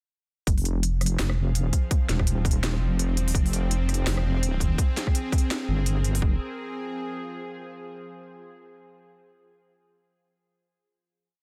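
Tense and heavy, this short half-time drum and bass piece in F dorian at 167 BPM drops in at 0.5 seconds with an up-front, hard-clipped electronic kick, a sparse beat of cracking snare, rim click and crisp, tape-tinged hi-hats, and a deep, dark sawtooth-and-sine wobble bass with chorus and changing wobble speed. Entering at 1.3 seconds, a string-like, ring-modulated drone with vibrato, reverb and sidechain pumping carries slowly shifting chords from Fm through Cmadd9 and Abadd9 before holding a final Fm chord alone from 6.4 seconds, all in a dense, heavily limited modern master.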